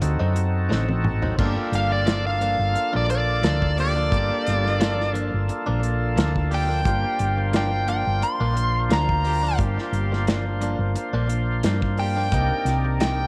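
Soul blues in G minor at 88 BPM with a smoky, mournful mood, where a round, up-front hollow-body bass and a warm small-room drum kit lay the groove beneath a thick, lightly overdriven tonewheel organ on slow rotary, twangy clean guitar stabs with slapback echo sit in the background, a drum fill from 0.7 seconds leads into a bright, tight horn section holding sustained chords from 1.4 seconds, and a dark, smooth overdriven lead guitar carries the high melody from 1.8 seconds over the chords moving from D7b9 to Gm7 and then Cm7.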